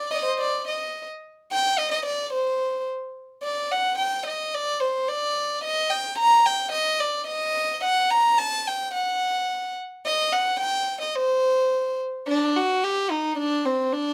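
A lone bowed violin opens this bittersweet yet festive klezmer excerpt, playing at 109 BPM in a straight 2/4 in C dorian sharp 4, cut from a longer piece. Up front in a moderate studio reverb, the single player's rich, pure tone is drawn sul tasto with a soft attack, giving the line a floating quality across its span from C4 to Bb5. A brief opening phrase gives way at 3.4 s to a new passage, which begins again at 12.2 s and carries the solo to its close at 14.1 s.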